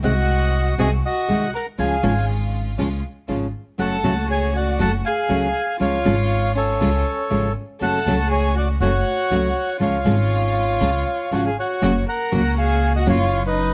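Tango at 120 BPM in 4/4 with a rubato feel, this playful, passionate passage is cut from a longer piece and moves through chords such as C#, F#m and finally F#. The reedy, dark bandoneon carries the melody up front, its boxy small-room tone giving the lead an intimate color. Beside it, a bright, fingerpicked nylon-string guitar plays classical accompaniment, stopping at 13.2 seconds, while a woody pizzicato upright bass anchors the low end. A warm, bowed solo violin enters at 0.1 seconds with a second line full of vibrato, soft attacks and expressive portamento. A clear studio string section adds biting, earthy stabs with light vibrato. Light reverb surrounds the ensemble, and a brief new section opens at 11.8 seconds on the F# chord.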